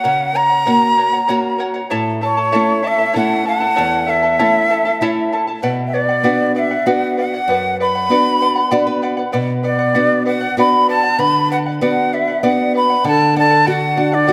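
A wet concert-hall reverb with a 1.9-second tail surrounds this festive, earthy Andean folk excerpt, cut from a longer piece and set in B minor at 97 BPM in a straight 3/4. Up front, a large wooden quena carries the melody with an airy tone, gentle vibrato and soft attacks, touched by tape echo. Beneath it, a second, very quiet large quena plays a breathy, hollow line with tongued notes, audible chiff and its own vibrato. The accompaniment pairs a fingerpicked charango, whose double strings, some doubled at the octave, give a shimmering sparkle, with a small, bright fingerpicked nylon-string guitar placed up front, its finger squeaks audible and a short fill at 8.4 seconds. The harmony moves from F# to A and then to Bm, shifting to D as a new section begins at 13.0 seconds.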